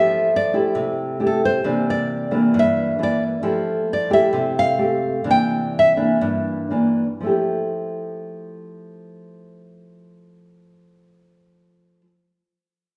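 Romantic and relaxed, this short bossa nova excerpt in F major moves at a tempo between 114 and 135 BPM in a straight 4/4. Two nylon-string guitars sit up front: one carries the melody between A4 and G5, fingerpicked with a warm, fresh-string sparkle, while the other supplies accompaniment from G2 to G4, thumb-plucked with a classical touch. The melody guitar drops out at 5.9 seconds, and the accompaniment carries on alone until 12.1 seconds. The harmony alternates between Fmaj9 and C9, returning to Fmaj9 at 7.2 seconds as a new section begins, and the playing slows down from 3.4 to 7.2 seconds. A wet recital hall reverb, with a decay time of 1.6 seconds, gives the guitars the spacious bloom of a church or concert hall.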